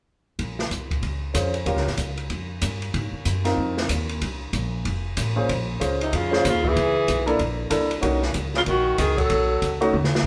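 A distant, roomy alto saxophone carries the melody in this cool, swinging cut from a longer small-group swing and bop piece, entering at 6.0 seconds with light vibrato and scooped notes alongside a tenor saxophone on a lower second line in the same jazz style. Underneath, a pizzicato upright bass with a woody, thumpy steel-string tone and an acoustic drum kit drive a brisk 189 BPM in 4/4 with a swung eighth-note feel in Bb minor. The kit sits up front with a dark, smooth character, a medium-tuned snare, a boomy kick, hi-hat, ride and toms, and it closes with a fill at 9.9 seconds. A polished, present grand piano comps from 1.3 seconds through harmonies such as Bbm9, a rootless Eb9, Bbmaj9#11 and Bmaj9. The band plays live in one room, wrapped in a moderate large-studio reverb that gives the horns a warm, spacious glow.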